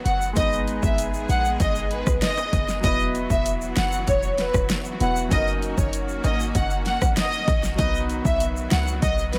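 A dark, lush violin section carries the melody up front, bowed with expressive vibrato and portamento and trailed by analog delay, in this sunny, bouncy dancehall excerpt at 97 BPM in B major. Beneath it, a clear grand piano, also echoed by analog delay, and a distant, intense string section holding sustained chords both pump with sidechain over a G#m, Esus2, F#6, B progression, while a short, tight 808-style bass with a fast attack and mellow sine tone sits under an overdriven deep house drum kit with a punchy kick, fat snare, rim click and hi-hat. Ringing egg shaker and timbales stay close and dry in the background, and light reverb rounds out the echo-heavy mix.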